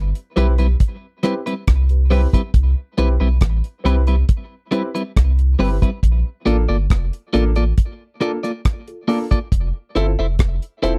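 Sunny and uplifting, this short excerpt of roots reggae moves at an unhurried 69 BPM in 4/4 with a straight feel, set in C major. A round, sine-like sub bass opens at 0.0 seconds, deep and sustained with a fast attack, sitting up front in the mix. A dry acoustic drum kit enters just after, its tight kick, hi-hat and rim click close and forward. By 0.4 seconds a clean, picked electric guitar joins with compressed accompaniment coloured by tape echo, alongside natural-sounding grand piano stabs set lower in the balance. The harmony glides from Cmaj7 to Bbmaj7 at 6.0 seconds and on to Fmaj7, all captured in an intimate, close 1970s-style studio sound with little reverb.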